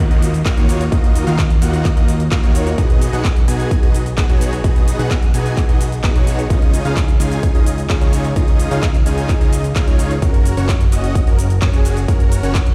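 Anthemic and euphoric, this festival progressive house excerpt rides a lush, detuned supersaw chord riff with tape echo and sidechain pumping over a fat, thick analog bass, a punchy up-front kick entering at 0.5 seconds, a big-room kit of handclaps, metallic hats and shaker, and a very quiet downlifter that ends by 2.8 seconds, all heard through a big sound system in a bare stone room as the chords move from D#madd9 through B6 and C#add9 to F#.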